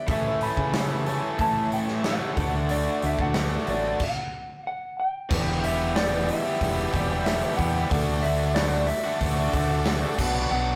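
A rough rehearsal-room sound with warm saturation and moderate reverb frames this swaggering, brooding classic rock excerpt at 92 BPM in E dorian, where a growling, overdriven fingered bass and a punchy big-room drum kit with bright cymbals drive a double-tracked overdriven electric guitar riff up front, a compressed, slightly broken-up electric slide guitar carries the melody, a very quiet picked steel-string acoustic guitar and a key-clicking tonewheel organ through a slow rotary speaker fill in underneath, and the band hits a stop from 4.0 to 5.3 s before moving into a new section.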